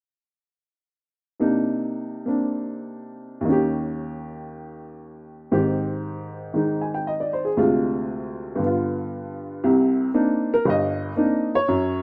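Cool and late-night in mood, this brief jazz passage is cut from a longer piece and swings along in 4/4. A lone upright piano carries everything, entering at 1.4 seconds and playing solo through to 12.0 seconds, ranging from deep in the bass up to the upper-middle register. Its tone is woody and boxy with a short sustain, sitting up front in the sound. The harmony moves through Cm9, Eb7, Abmaj7 and a Dm7b5 to G7 turnaround before returning to Cm9 as a new section begins at 9.6 seconds. The recording has the feel of a rough home demo, with the intimate ambience of a small room around the instrument.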